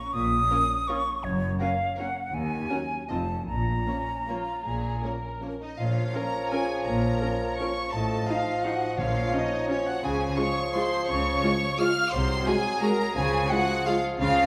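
Festive and elegant, this rubato orchestral ballroom waltz in Bb minor sways in 3/4 at 145-189 BPM, a short passage cut from a longer piece and set in a wet recital hall. A focused, rich violin section carries the melody over an airy, bright silver flute and dark, distant second violins, while expressive cellos, a smooth, lush double bass section, soft-attack violas with portamento and a warm horn section in the background fill out the harmony. At 5.8 seconds a bright clarinet and a lightly vibrato bassoon join in, and round, soft-mallet timpani sound briefly at 9.0 seconds.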